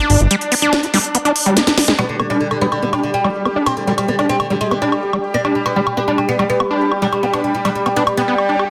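A dense, heavily limited modern master with a moderate digital room reverb frames this hypnotic, psychedelic trance excerpt, cut from a longer piece and running at 143 BPM in 4/4 with a straight feel in G major. From the outset a bubbling stepped-filter texture holds sustained chords, its detuned sawtooth tone carrying chorus, built-in reverb and vintage 12-bit sampler grit. Beside it, an overdriven acid bass drives a squelchy, resonant riff, distorted and fed through digital delay. A techno drum kit sits up front with a cracking snare, smooth hats and woodblock, and it plays a fill that carries a band accent just before 2.0 seconds. At that point a bright, woody oud enters with a plectrum-plucked melody, its double strings colored by phaser and digital delay, while a filter sweep begins on the acid bass. From 4.8 seconds a deep, moody ambient pad settles in the background, dark and detuned with chorus and reverb.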